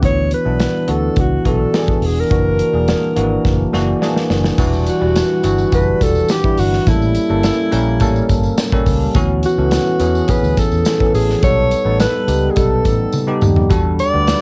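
A home cassette recording in a moderate booth ambience carries this slick, nocturnal 1980s jazz-funk pop at 105 BPM: a bell-like tine electric piano with analog chorus, an envelope-filtered fingered electric bass and a punchy modern studio drum kit with bright cymbals form the backing, a breathy alto saxophone with subtone, light vibrato and scooped notes sings the jazz-style lead up front, a jingly tambourine joins in the background at 4.6 seconds, and the chords move from D69 through Em9 and Dmaj13 to Em11.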